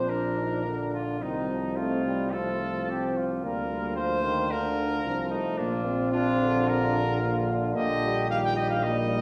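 Heard from further back in a reverberant recital hall, this triumphant, noble classical brass-quintet passage in Bb major moves with rubato at 111 BPM in 4/4: a clear trumpet with light vibrato carries the melody up front, a warm flugelhorn with light vibrato adds the second line, a soft-attacked French horn with vibrato and a present trombone accompany in the background, and a smooth-topped tuba with light vibrato sits up front on the bass.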